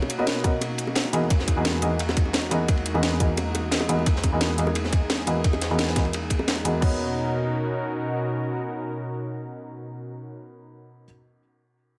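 A detuned, warbling analog pad with subtle chorus and sidechain pumping holds sustained Bmaj9 and Emaj9#11 chords up front in this uplifting liquid drum and bass excerpt at 174 BPM, joined by a dark, worn grand piano with audible action noise, dub echo and a filter sweep, while an overdriven electronic kick, a layered kit with cracking snare and bright hats, a gritty breakbeat kit with dark cymbals, and tight, high-tuned bongos in the background all stop by 6.9 s, leaving pad and piano to carry on until the piano closes at 11.0 s.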